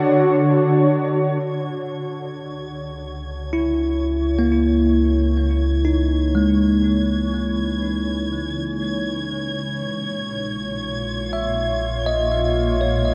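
A bell-like tine electric piano sits up front with bright, clean arpeggios from 3.5 seconds, colored by phaser and delay, over a shimmering, detuned ambient pad whose sustained chords open the piece and then fade in further alongside a bowed chamber violin section that enters at 1.4 seconds with intense vibrato. A deep, ominous drone rumbles beneath from 3.0 seconds as the harmony moves from Dmaj7 to C#m and later A#m. This reflective, spacious ambient passage, cut from a longer piece, is bathed in a huge, wet reverb and the worn, warbling pitch drift of old cassette tape.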